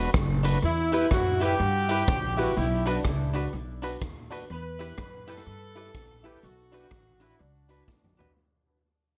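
A swung ska groove drives this mischievous, energetic clip cut from a longer piece, with a raw garage drum kit, gritty and punchy-kicked with delay, and a thumpy, woody pizzicato upright bass holding the floor under a Bm–Em progression. A mellow, distant horn section with light vibrato and analog delay carries the melody, while a twangy, compressed clean electric guitar with tremolo and a boxy upright piano with audible action noise, entering at 0.9 s, add accompaniment and stabs. The small room gives everything a moderate ambience as the whole clip fades, closing on a drum fill at 7.9 s.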